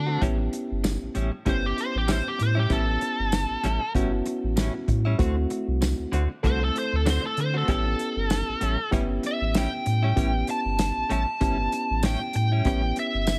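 Straight-eighth soul blues at 96 BPM in 4/4 with a light sixteenth-note swing, this soulful, swaggering excerpt in A mixolydian, tuned to A4 = 438 Hz, moves from A7 to D7 at 5.2 seconds and back to A7 at 7.7 seconds, as a bright, biting overdriven lead guitar solos up front throughout over a reedy, lightly overdriven electric piano, a deep, round sine sub bass, picked clean electric guitar stabs recorded direct with compression and tremolo, and a dark, smooth acoustic soul drum kit of tight kick, medium-tuned snare, hi-hat and tambourine, set in a small room ambience.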